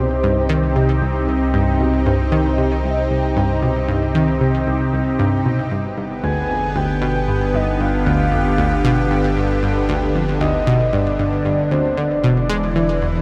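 Expansive and hypnotic, this straight 4/4 stretch of sequencer-driven ambient space music is bathed in a huge, wet reverb as its chords move through Cm, G and E7. A lush, thick unison pad sits up front throughout with bright, detuned chords treated with chorus and phaser, while an analog pluck plays a decaying, wave-folded sawtooth riff through chorus and delay, all anchored by a deep, round bass. A soft, dark octave-layered synth lead with vibrato and a sub octave sounds briefly at the start, then returns at 6.2 seconds to carry the melody through chorus, phaser and delay until the cut at 13.2 seconds.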